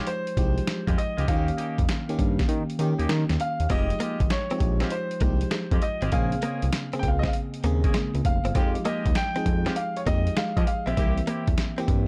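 New jack swing R&B in F minor at 99 BPM with a swung sixteenth feel, this punchy, slick excerpt moves through Fm9, Eb7, Bbm9 and C7 over a gritty, pitched-down boom bap drum kit with a thumpy kick sitting up front, its kick dropping out from 2.5 to 3.7 seconds, and a smooth sawtooth synth bass. A clear, intimate grand piano carries the melody with audible action noise, while a glassy, bell-like FM electric piano with chorus supplies accompaniment and a vintage horn section adds tight stabs with light vibrato. A clean, direct-recorded electric guitar riff with lush chorus enters at 3.7 seconds in the background, all within a dark, dry production.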